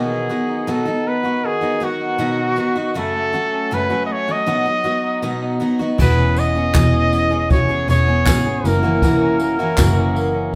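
A clear, punchy trumpet carries a carefree, heartfelt acoustic pop melody over a bright, picked steel-string acoustic guitar and a clean, compressed electric guitar playing arpeggios in the background at 79 BPM in E major, until at 6.0 seconds a rich, bowed double bass, a brushed jazz drum kit with dark cymbals, boomy kick and handclaps, and a jingly tambourine join in a wet studio room sound.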